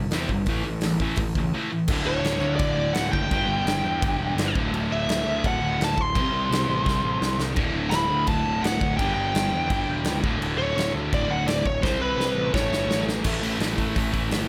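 A biting, dark-toned lead guitar carries the melody from 2.1 seconds, riding over a rowdy, energetic punk rock drive cut from a longer piece. Underneath, a double-tracked, scooped distorted rhythm guitar plays the riff up front while a growly fuzz bass adds punch, and a big acoustic rock kit with bright cymbals and a punchy kick pushes things along, breaking into fills around 6.9 and 11.8 seconds. The sound is dry, with little reverb.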